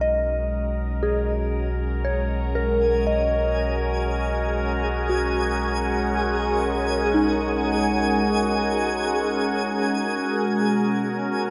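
In a straight, unhurried 4/4 at 59 BPM, this peaceful ambient piece in B major fades in on an evolving, detuned wavetable pad with a vintage warble holding Bmaj7 up front, while a soft FM synth bell spins pure, mellow arpeggios through chorus and tape echo, a round, deep analog bass sustains beneath, and a twinkling granular texture with an octave-up shimmer joins at 2.8 seconds, all bathed in a lush hall reverb before the harmony opens to a bare Bmaj7 with its third dropped at 10.3 seconds.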